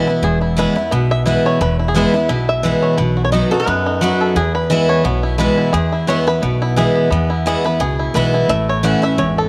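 A brisk 174 BPM swing in 4/4 drives this short, rustic and lively bluegrass cut from a longer piece, set in E major with the tuning sitting slightly low at A4 = 435 Hz. A twangy, percussive five-string banjo played with fingerpicks takes the melody as a solo throughout, while a bright, full-bodied dreadnought steel-string guitar, picked and up front in the mix, carries the accompaniment. An upright bass with gut strings joins at 0.2 seconds, its pizzicato notes woody, dark and thumpy. For a brief moment at 3.5 seconds a lap resonator guitar adds a metallic, nasal slide line played with fingerpicks. The harmony moves from E to B and back to E before turning to A near the close, across two passes of the same section, all set in a moderate plate reverb.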